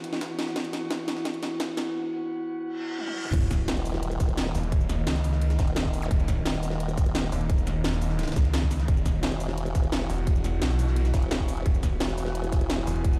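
Played on a big sound system in a bare stone room, this cut from a longer dark technical drum and bass piece has a light digital ambience and a filtered low end. At 173 BPM in straight 4/4 and Eb phrygian, the mood is mechanical and aggressive. An eerie, metallic FM drone holds sustained chords with a slow attack, chorus, its own reverb and sidechain pumping. Meanwhile, a tight, up-front electronic kick and an overdriven kit with cracking snare, bright hats, shaker, toms and crash drive the build-up with drum fills. A very quiet, gritty jungle sampler-style kit with a pitched-up, high-tuned snare sits behind them, and a reverse cymbal, impact and zap in the background lead into the drop at 3.3 seconds. There a snarling, detuned saw bass arrives, growling and distorted with sidechain pumping, joined at 3.7 seconds by a formant-sweep wobble bass of pulse and sine tones, saturated and chorused, both placed up front through the drop.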